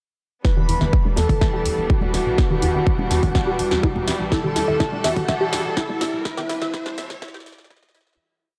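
A dark, softly reverberant digital ambience frames this short progressive house build, which feels driving and dreamy from its first moments at 0.4 seconds. A punchy, up-front electronic kick holds a four-on-the-floor pulse, joined by a layered dance kit of programmed open hats and snare, while ringing congas and bongos played with soft hands add a close tribal loop that pumps with the sidechain. From 0.7 seconds a plucky analog bass gallops in sixteenth notes, its fast-attack filter pluck decaying under sustained, clear studio strings with light vibrato and a biting, smooth-topped ensemble tone. A tight, detuned sequenced synth repeats a 16-step arpeggio in the background, coloured by chorus, phaser and tape echo, with a filter sweep running through the passage. A velvety sawtooth lead carries a repeating riff, doubled in unison by an airy, mellow second lead with portamento and a moving notch, both washed in chorus and echo over harmony that moves from Em7 to Dsus4/E and Cadd9/E. 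A very quiet electronic riser enters at 2.0 seconds as the build rides a drum fill and begins fading out at 5.6 seconds.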